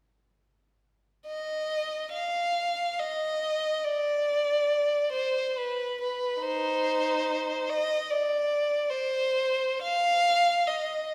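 A lone bowed violin enters at 1.3 seconds with a rich, focused tone, singing up front with vibrato and a smooth top across a mournful, meditative classical passage in a free, rubato 3/4 around 70 BPM, its line set in the lingering reverb of a church or concert hall over a faint mains hum until it stops at 11.1 seconds in this fragment of a longer piece.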